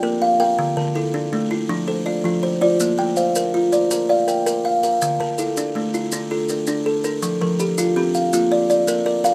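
A straight 12/8 pulse drives this hypnotic southern African traditional mbira-style interlocking cycle, where two buzzing kalimbas play arpeggios up front over Bb, Dm and F chords: one is woody and hollow-boxed with a bright, short thumbnail pluck, and the other rings airy off a solid board. Grainy, saturated maracas join at 2.8 seconds, all in a rough home-demo mix with moderate studio reverb.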